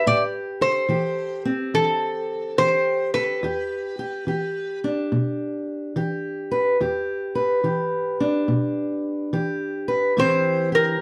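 Acoustic country blues in E minor at a slow, swung 71 BPM, brooding and soulful, where a metallic, nasal resonator slide guitar with slapback echo sings the melody from 0.0 to 4.8 seconds and returns at 10.2 seconds over a dark, boxy fingerpicked parlour steel-string guitar that carries the accompaniment throughout, both up front in a close, detailed sound with light reverb as Am7 moves to Em7 and back.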